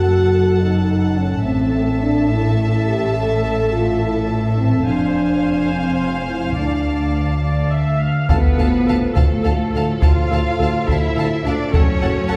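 Moving in a straight 6/8 at 70 dotted-quarter beats per minute, this excerpt from an epic orchestral film score in D dorian feels relentless, with chords shifting from F#m through Am, Fm and Dm before returning to F#m. A lush symphonic violin section carries the melody from a distance while a close, expressive chamber violin section sings a second line above focused, bowed violas. Dark French horns hold sustained chords, anchored by a smooth cello section and a double bass section whose bowed lines slide with portamento. At 8.3 seconds the weight arrives: a saturated, compressed taiko ensemble struck with heavy sticks, a huge, bright impact in the background, and clear trombones and a vintage-toned tuba adding sustained chords and bass. The whole orchestra sits back in a reverberant scoring-stage space that lends a sweeping, cinematic scale.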